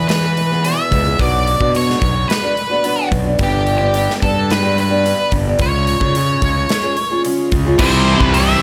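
An up-front octave-fuzz lead guitar carries a restless, anthemic melody in this quiet-loud alternative rock piece, over a fresh-stringed acoustic archtop picking arpeggios with audible finger squeak, a growly fuzz bass and a punchy big-room drum kit with bright cymbals, until at 7.8 s a distorted guitar, a double-tracked overdriven guitar and a faint fuzz guitar surge in with a riff beneath a very quiet, reedy gut-string chamber section holding sustained chords.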